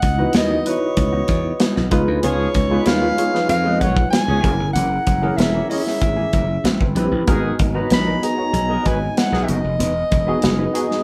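Captured as a band playing together in one room with moderate studio reverb, this short cut of polished, bittersweet and slick 1980s jazz-funk pop moves at 95 BPM in a straight 4/4, where an up-front soprano saxophone carries the melody with a warm subtone and light vibrato over a growly slap bass, a punchy kick and snare drum kit with hi-hat, a lightly overdriven, slightly out-of-tune tine electric piano, a dark, clean electric guitar riff and airy, distant flute chords in the background, while a tight, clear horn section adds a second line from 2.2 s to 9.6 s across chords running from C#m11 to Emaj7.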